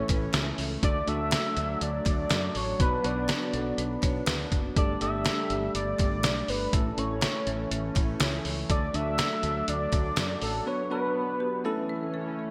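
Glossy and romantic, this short cut from a longer piece is 1980s-style pop at 122 BPM in a straight 4/4, set in A mixolydian and cycling through A, D, Bm and Gsus2 before returning to A. A bold, octave-doubled lead with chorus and vibrato carries the melody from the start until 11.9 seconds, while a bell-like tine electric piano chimes the accompaniment and a chorused pulse-width pad holds shimmering, slow-blooming chords beneath it. Set back in the mix, a marimba struck with hard mallets adds a woody second line through a delay. The low end comes from a growly, round fretless electric bass that drops out at 10.6 seconds, alongside an up-front, lo-fi sampler-style drum kit with a thumpy kick, fat snare, hi-hat and tambourine treated with gated reverb, plus a very quiet group handclap. A lush hall reverb and bright digital production give the whole a polished period sheen.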